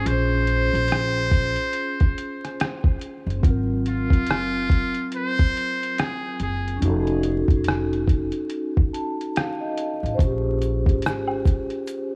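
Swung 16ths at 71 BPM in 4/4 drive this melancholic, hazy lo-fi hip hop fragment in Bb minor, where a muffled, compressed, pitched-down sampler kit with a thumpy kick sits up front alongside a woody, dark pizzicato upright bass, a mellow vibraphone with soft mallets and slow motor vibrato carries the Bbm9, Ab13 and F7b9b13 chords through a cassette-tape low-pass haze, a buzzy, breathy metal-muted trumpet plays a jazz-style solo melody with tape echo until 6.8 seconds, a close, dry egg shaker and woodblock join at 10.2 seconds, and vinyl crackle hangs over the whole passage.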